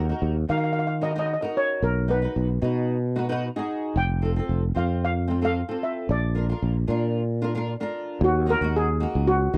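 Calypso in Eb minor at 113 BPM, this brooding, bittersweet cut from a longer piece moves through Ebm, B, F and Bb before returning to Ebm at 8.2 s. A shimmering, mellow double seconds steel pan, struck with soft rubber sticks and sitting up front in a boxy small room, carries the melody over a double-tracked, fingerpicked flamenco guitar with warm fresh strings. Underneath, a growly, direct sustaining fretless electric bass anchors the sound, all captured in a dry, close 1970s-style studio recording.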